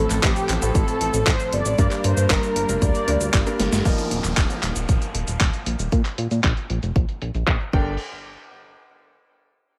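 A glossy, nasal synth bass sits up front through most of this short cut from a longer italo disco track, its plucky, chorused tone carrying a melodramatic, danceable mood over a straight pulse. A punchy, layered electronic kick drives it alongside a gritty, overdriven sampler-style kit of snare, hi-hat, handclaps, cabasa and crash cymbal, whose filtered, dusty character stays up front and compressed, with a drum fill at 3.6 seconds. In the opening half, a round, detuned synth brass with chorus and delay carries the melody while a dark chamber string section, bowed softly and kept in the background, holds sustained chords. A brilliant baby grand piano adds stabs with long sustain across most of the passage as the harmony moves from F/A and Gm to Ebsus2 and Bb5. From 3.9 seconds an electronic downlifter sounds faintly beneath the groove, and the dry, close mix gives the whole arrangement an immediate, punchy presence.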